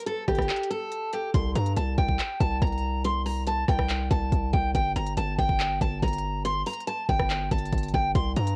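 A half-time trap beat at 141 BPM in G minor drives this melancholic, brooding hip hop fragment, its overdriven drum kit of knocking kick, crisp hi-hat, handclaps and rim click sounding re-recorded in a small room with cassette grit, and a break arrives at 0.5 seconds. A picked steel-string acoustic guitar carries the melody up front, bright but low-pass filtered and taped, while a distorted 808-style bass hits heavy, aggressive and saturated, with a fast attack that decays. Light reverb and a home cassette recording give the piece a homemade feel as the harmony moves from C5 at 1.3 seconds to G minor at 4.7 seconds.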